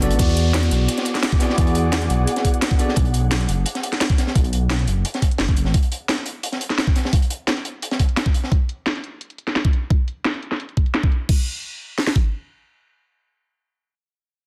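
Liquid drum and bass with a lush, melancholic mood: a bell-like tine electric piano with delay and a distant, ethereal pad with chorus and sidechain pumping float over a deep, rumbling detuned saw bass, while an overdriven kit with a knocking kick and cracking snare is joined by two more drum kits, one layered with bright hats and one gritty breakbeat with a high-tuned snare, and a background downlifter sweeps through the opening bars before the keys and pad fall away at 3.0 seconds.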